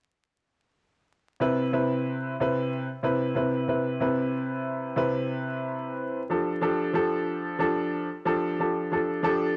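Vinyl crackle colors this soulful, confident hip hop fragment, in which a woody, slightly worn upright piano enters at 1.4 s, playing swung accompaniment chords that move from Cmaj7 to F69 at 6.3 s. The slightly detuned piano sits up front with long sustain and cassette-tape character, bathed in a moderate spring reverb that gives the home recording its intimate, lived-in sound.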